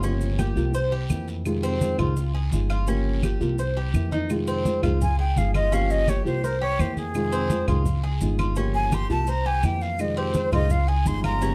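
A breathy, soft-attacked jazz flute enters up front at 5.0 seconds to carry a sultry Cuban son and guajira melody, while a thumpy, gut-strung upright bass anchors the low end beneath small thumb-plucked nylon-string guitar, metallic double-stringed tres arpeggios, and background percussion of low-tuned congas, woody claves, raspy guiro and grainy maracas, set in light reverb with a dark, warm production.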